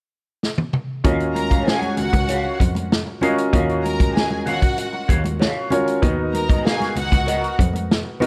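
A vintage drum kit with a punchy kick opens with a fill at 0.4 s, and at 1.0 s this silky, cinematic 1970s-style soul piece in Eb minor settles into a straight 96 BPM pulse over Ebm9. A concert grand piano with deep bass, a clear bowed cello on the bass line, bright soft-handed congas in the background and a dark, slightly broken-up electric guitar riff through wah all enter at that point, followed at 1.4 s by a lush symphonic violin section, all set in light small-room reverb before the harmony moves to Bmaj7 at 6.0 s.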